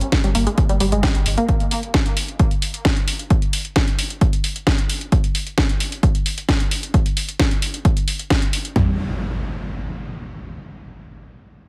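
A straight groove of punchy kick and toms drives this hypnotic, relentless slice of peak-time techno, with cracking snare and metallic hi-hats pumping against the sidechain, all up front and carrying the faint character of a small room. A tight, detuned sawtooth riff with a filter pluck, chorus, tube saturation and dub echo briefly joins a thick, saturated sine sub bass under a low-pass filter from 0.2 to 1.4 seconds, both pumping in time before they drop away and the drums carry on alone. At 8.8 seconds the riff flickers back as an electronic impact hits and rings out to the end, the whole mix squeezed into a heavily compressed, radio-like sound with light reverb.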